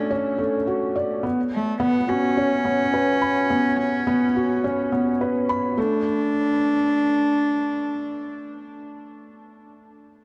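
A felt-muted upright piano riff and a rich, gut-stringed bowed cello melody open this cinematic, hypnotic electronica excerpt together, both up front and touched by tape echo, as the harmony moves from Dmaj7 to F#sus4 through a drop that lasts until 5.8 seconds. The piano sounds soft, mellow and intimate, its action noise audible, while the single cellist plays in a reedy, close period style. From 5.8 seconds the chords fall away, the cello stops at 8.8 seconds and the piano carries on to 10.2 seconds, all inside a huge ambient reverb and a dark, warm production.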